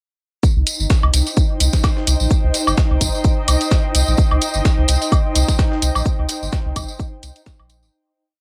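A punchy electronic kick drives this hypnotic, clinical minimal techno piece in a steady four-on-the-floor, joined up front by a thick, saturated sub bass rolling in a staccato groove from 0.6 seconds. Around them, programmed hats, jingly hand-played tambourine sixteenths and woodblock clicks with tape echo in cross rhythm sit over a gritty, compressed looped breakbeat tucked in the background, all with a swung, cassette-tinged feel. An airy, breathy pad of slowly shifting chords and a bubbling, resonant stepped-filter texture holding a high note drift above, before the piece fades out from 5.4 seconds.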